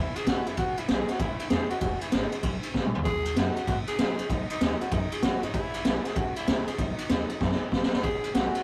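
A raspy, growling tenor saxophone opens this upbeat, retro rockabilly excerpt at 193 BPM in E major, carrying the melody over a picked, full-bodied steel-string acoustic guitar kept very quiet in the mix and a woody, thumpy upright bass sitting in the background. The raw garage drum kit enters at 0.2 seconds and sits up front, its punchy kick, high-tuned snare, ride cymbal and toms sounding saturated and gritty with a rolled-off top. The eighth notes swing, and the chords move through A, E and B before returning to E at 8.0 seconds. Drum fills land at 2.7 and 7.4 seconds, giving the short passage a lively push. Light reverb and tube saturation lend the rough rehearsal-room sound a retro edge.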